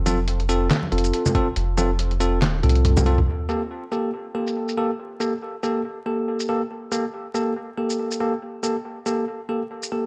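Deep dubstep with a brooding, cavernous half-time swing, this cut opens on a drop where a round, soft sub bass holds until 3.3 seconds beneath ringing acoustic congas with dub echo and a brief, muffled, thumpy electronic kick, while bell-like electric piano stabs trail dub echo and a pitched-down, compressed trip hop sampler kit of snare, toms, handclaps, hi-hat and shaker carries a fill into a filter sweep from 3.3 seconds, over a dry, gritty recording with transformer saturation and vinyl crackle.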